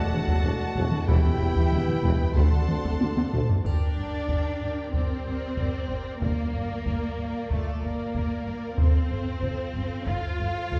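Heard from further back in a wet scoring stage, this cinematic, epic orchestral cue cut from a longer piece feels relentless and heroic, driven by an up-front, compressed and saturated taiko ensemble played with heavy sticks, over woody, dark bowed double basses and lush, expressive cellos. Two violin lines, one a vibrato-rich melody and the other a smooth, even second line, sit over focused violas and a distant, very quiet French horn section holding sustained chords, while trombones, trumpet stabs and a roomy solo tuba play only until about 3.3 s, as a drum fill leads into the next section. Very quiet timpani with hard mallets and calf heads sound twice, and a triangle enters in the background at 3.7 s.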